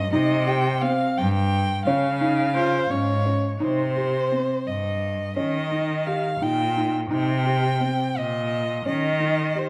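Urgent and hypnotic, this contemporary chamber excerpt moves in an uneven 5/8 at 172 BPM in C phrygian, with a rich, boxy bowed violin carrying the melody over a focused, smooth-topped cello bass line, both sung with vibrato and placed up front. Beneath them a felt-muted upright piano spins soft, dark arpeggios, its thick felt and audible action noise lending an intimate, mellow texture, while a clear viola adds a brief second line from 2.5 to 3.6 seconds. The harmony moves through Cm, Db, Eb, Cm7 and Eb7 in a moderate recital hall reverb.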